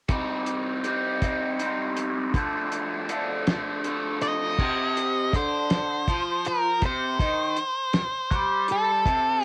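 A raw, bright garage guitar riff, overdriven and phased, opens this bittersweet, moody indie rock excerpt in 6/8 alongside a cloth-damped, thuddy drum kit with a fat snare, tight kick, dark cymbals and a rolled-off, cassette-tape top, before an octave-fuzz lead guitar enters at 4.2 seconds with a dark, distorted melody, all captured as a lo-fi home cassette recording with light reverb.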